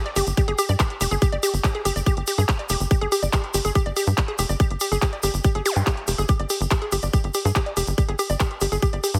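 Heavily compressed with a radio-like squeeze and light digital ambience, this intense, psychedelic trance excerpt at 142 BPM drives on an up-front, tight electronic kick, a punchy, nasal sequencer bass, and a woody, wave-folded pluck riff carrying chorus, cassette-tape colour, sidechain pumping and delay, while a layered drum kit adds handclaps and hi-hat, a grainy tube shaker sits distant as if in a large room, and a brief electronic zap flickers in the background at 5.7 s.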